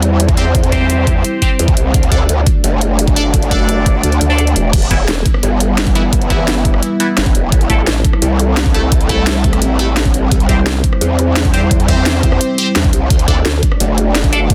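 Dark and futuristic, this excerpt of technical drum and bass runs at 172 BPM in a straight 4/4, built over a progression that moves from C and D to Em, Am7, and back through C and D. A growling, aggressive growl bass sits up front from the start, detuned, saturated, and formant-filtered, with overdrive, chorus, and sidechain pumping. A deep, moody analog pad holds sustained sawtooth chords with a sub octave, slow attack, and long release, also pumping under the sidechain. The drum kit brings a cracking snare, bright hats, rim clicks, and crash cymbals, overdriven and re-recorded in a small room, while a knocking electronic kick enters at 0.3 seconds and drops out briefly between 4.0 and 4.7 seconds. A band-passed, nasal chord stab with a filter pluck adds decaying, phased hits through a digital delay, and a resonant vowel-sweep wobble bass cuts in with short bursts, first at 5.1 seconds. 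Light reverb and digital ambience frame a dense, heavily limited modern master.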